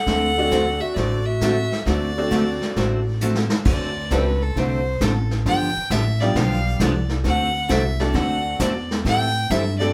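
Country western swing with a down-home, playful mood and a swung feel, this short cut opens with a clear, focused fiddle carrying the melody while a breathy, whispered clarinet adds a soft second line until 3.2 seconds. A drum fill from the brushed vintage kit with dark cymbals leads into a fiddle solo at 3.7 seconds, backed by a full-bodied picked steel-string acoustic guitar, a jangly tack piano and a woody upright bass sitting up front. The band sounds as if playing live together in a small room with a wet, short reverb.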